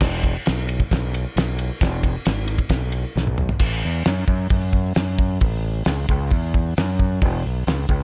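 A raw, swaggering garage rock passage in E major at 133 BPM in a straight 4/4, cut from a longer piece. A growling, overdriven fingered electric bass with a bright, directly amped edge sits up front alongside a cloth-damped, thuddy acoustic kit, also up front, with a fat snare, tight kick, dark cymbals and a rolled-off top. A drum fill at 3.2 seconds leads into a new section at 3.6 seconds, all captured dry with little reverb.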